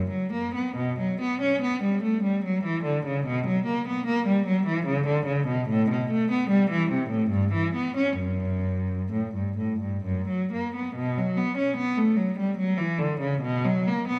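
Introspective and solemn, this brief passage cut from a longer piece is a baroque-style suite movement for solo cello in B minor, moving in 3/4 at 63 to 76 BPM with a free, rubato feel. A single bowed cello plays alone throughout its 14.2 seconds, its rich, focused tone carrying vibrato and a smooth top as it ranges from F#2 to C#4. The instrument sits up front in a wet concert hall reverb with a 2.2-second decay, which lends the lines a spacious glow.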